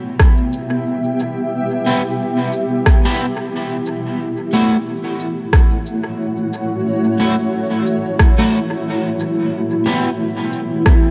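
A granular cloud pad of blurred, detuned sustained chords opens this hazy, spacious ambient dub excerpt in E dorian at 90 BPM with a swung 16th feel, joined almost at once by a punchy, up-front electronic kick and a tape-tinged rim click and cabasa trailing dub echo, while a dark, slightly broken-up electric guitar enters at 1.9 seconds with chorused stabs that ring into dub echo, all over light reverb and vinyl crackle as the harmony moves from Em to F#m7 and back.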